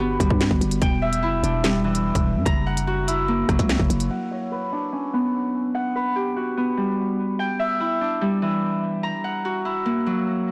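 This drill beat moves at 146 BPM in 4/4 with a half-time feel, its drum kit entering at 0.2 seconds with a hard-clipped kick, sharp snare, crisp hi-hats, handclaps and rim clicks, all electronic, tape-warm and up front. A growling, buzzy 808-style bass with a fast attack and decaying sine tone sits beneath, and both bass and drums stop at 4.1 seconds. A ringing, fingerpicked Celtic harp plays arpeggios from the start through 10.5 seconds, its acoustic tone passed through a low-pass filter and tape echo. Once the beat drops out, a filter sweep runs across the harp for the rest of this cut from a longer piece, carrying the chords of B harmonic minor, including Gmaj7, Em7, F#7 and Bmadd9. The mood is tense and ominous, and the overall sound is blown-out and overdriven, with light reverb.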